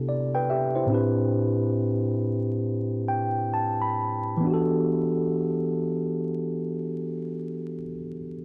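A moderate plate reverb and a layer of vinyl crackle frame this short, late-night R&B fragment cut from a longer piece, carrying a loose swing and an introspective mood. A mellow tine electric piano plays alone, clean and up front, moving from Cmaj7 to Am9 while the pace slows over the opening 4.4 seconds, with a fill starting at 2.6 seconds. It then settles onto Em9 for the closing phrase.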